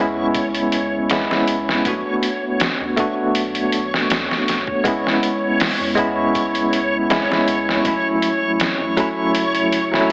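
A loping, lightly swung 4/4 groove from a gritty, pitched-down sampler-style drum kit enters at 0.3 seconds, its thumpy kick and medium-tuned snare sitting up front in this dark, brooding trip hop excerpt. A bell-like tine electric piano with tremolo and tape echo carries the chords, moving from C#m7 through Bm7 back to C#m7 and on to F#m7, while a round sine sub bass sits deep in the background and a reversed, detuned, granular texture hovers on a single high note from 0.1 seconds. The whole mix is bathed in lush hall reverb yet squeezed into a heavily compressed, crackling AM-radio sound.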